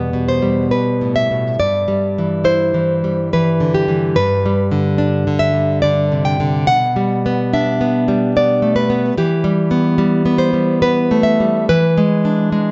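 A nylon-string guitar carries this romantic solo piece alone from 0.0 to 12.7 seconds, its fresh strings giving a full-bodied, fingerpicked tone that sits up front with audible finger squeak and a touch of tape echo. The mood is passionate and melancholic, moving at about 72 BPM in 3/4, though the beats are uneven and the phrasing stretches freely with rubato. The harmony dwells on E minor, shifting to Em/G at 1.6 seconds and G/B at 6.7 seconds before returning to E minor and turning to E7 near the close. The guitar ranges from a deep E2 up to G5, and a moderate recital hall reverb surrounds it, while nothing sounds above 7.7 kHz. This short passage is cut from a longer piece.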